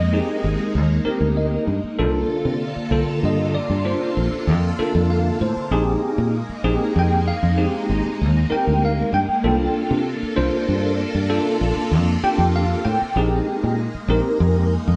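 A punchy, foam-muted fingered electric bass sits up front in this short jazz excerpt, a driving, funky groove in C minor at 64 BPM in a straight 6/8, tuned slightly flat to A4 = 438 Hz. A bell-like tine electric piano, clean and heard through its built-in speakers, comps through suspended Bb13sus4 and C13sus4 chords and slips in quick fills at 1.1 and 4.8 seconds, stopping at 14.7 seconds. Beneath them, a swirling vintage string machine with ensemble chorus and phaser holds slow-attack sawtooth chords, all captured as a band playing live in one room with moderate studio reverb.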